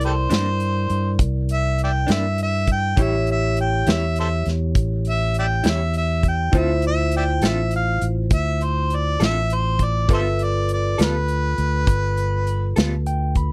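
A warm harmonica carries the melody of this soulful, swaggering slow blues, played jazz-style with light vibrato, tongue slaps and scooped notes, its smooth top edged with overdrive and a slapback echo, and it sits up front from 0.1 seconds. Underneath, the tempo is a slow 67 BPM in 12/8 with a straight feel, moving through C9, A7, Dm7 and G9. A dark, round fingered electric bass and a natural country drum kit with a punchy kick, medium-tuned snare and hi-hat, heard in a small room, hold the groove close and present. A barky, bright tine electric piano through a combo amp and a slightly broken-up, lo-fi electric guitar, picked and compressed through a small old amp with tremolo, fill out the accompaniment further back. The sound is dry and close in a 1970s studio manner, and this excerpt closes on a short electric piano fill at 12.8 seconds.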